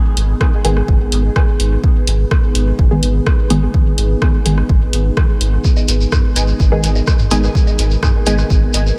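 A straight 4/4 dub techno pulse at 126 BPM in G# minor sets a nocturnal, hazy mood in this short excerpt, where an up-front punchy kick sits alongside a round, deep analog bass holding G#1 that pumps beneath a dark, chorused ambient pad with 12-bit sampler grit, an analog drum machine's hi-hat and rim click trailing dub echo, and a muted, detuned sawtooth chord stab with phaser and echo, before a grainy shekere enters at 5.6 seconds, very quiet overdriven woodblock and toms follow, and a higher filtered stab riff with a moving notch appears at 6.4 seconds.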